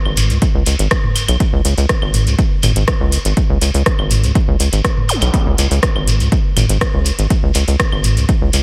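A straight 4/4 pulse at 122 BPM drives this short, hypnotic and cool minimal techno cut, taken from a longer piece and holding one section throughout. Up front, a punchy, overdriven electronic kick anchors the groove, joined by a layered house kit of metallic hi-hats and rim clicks that carries its own overdrive and the air of a large room. The rubbery square bass sits equally forward, a hollow, nasal and bouncy tone with a resonant filter pluck and a dark sustain, moving between G#1 and C#2 and pumping under sidechain compression. Analog-flavored electronic claves and toms drift through a diffuse ambient delay, while a grainy, mellow shekere sounds distant beneath them. A brief electronic zap flickers in the background at 5.1 seconds, and the overall mix stays dry and close, with little reverb.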